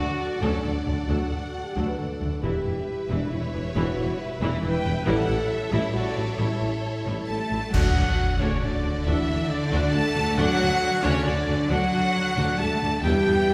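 Epic and heroic, this cinematic orchestral film-score excerpt moves in 3/4 at 136 BPM over D, Em and A7 chords, with lush vibrato violin sections carrying the melody and a darker second line, expressive viola with portamento, soft-attack sustained strings, rich cellos, close double basses and a roomy tuba anchoring the low end beneath warm French horn chords, until a pure flute and brilliant trumpet stabs enter at 7.3 seconds and a dry crash of clash cymbals and concert bass drum meets a huge sub drop at 7.7 seconds, all heard from further back in a wet scoring-stage reverb.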